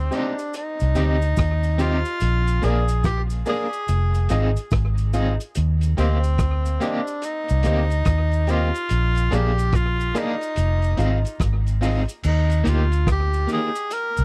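Sunny and laid-back, this roots reggae passage, cut from a longer piece, settles into an unhurried 4/4 with a swung sixteenth-note feel. A breathy tenor saxophone carries the melody with a soft attack and light vibrato, its whispered, intimate tone trailed by tape echo. Up front, a dark, foam-muted electric bass gives a round bottom, while an electric guitar at the edge of break-up adds twangy, picked accompaniment colored by tremolo and tape echo. A clear grand piano places stabs with audible action noise and long sustain, and a vintage drum kit with a tight kick, rim click, hi-hat, dark crash and rolled-off top sits beside a cabasa tucked in the background. The dry, close 1970s-style studio sound follows chords moving through Eb6, Bb7 and Fm7 before arriving on Eb at 12.2 seconds.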